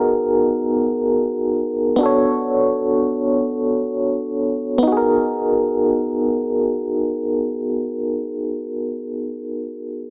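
A dark FM electric piano with tremolo opens this brief R&B excerpt, playing accompaniment from the first moment to 10.1 seconds in a slow, straight 6/8. Its tone pairs a fast attack and decaying notes with a noise layer, sitting up front in a plate reverb that adds a soft sheen. The chords move from G#m9 to Bm9 and back to G#m9, giving the passage a yearning, late-night feel. The pulse slows over the opening 4.9 seconds before the harmony returns to its starting chord. The whole recording carries a heavily compressed, small-speaker radio sound with light reverb.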